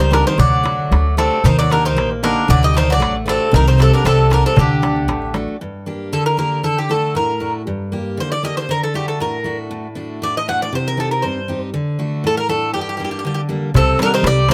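A straight 2/4 pulse at 117 BPM that gradually speeds up drives this moody, bittersweet Greek folk excerpt, where an up-front, metallic lead bouzouki with picked double strings carries the melody over a full-bodied jumbo acoustic guitar, while a low second bouzouki line, a woody, thumpy upright bass and a crisp metal-shell darbuka in the background fall away around 5.5 seconds and return near 13.8 seconds, all in a close, detailed recording with little reverb.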